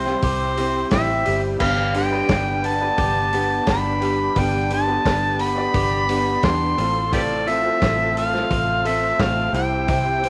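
Warm and open-road in feel, this folk rock and heartland rock excerpt moves at 87 BPM in G mixolydian, its chords shifting from C to G to F/A. An overdriven, gritty harmonica with tongue slaps sits up front carrying the melody, over a fingered electric bass with a round, foam-muted tone and a muffled, lo-fi vintage drum kit that comes in at 0.1 seconds with dark cymbals and a tight kick. In the background a picked acoustic archtop guitar with finger squeak and a slightly broken-up electric guitar riff with warbly pitch drift fill out the band, while a very quiet tonewheel organ on slow rotary and a worn, slightly detuned upright piano add color under light reverb.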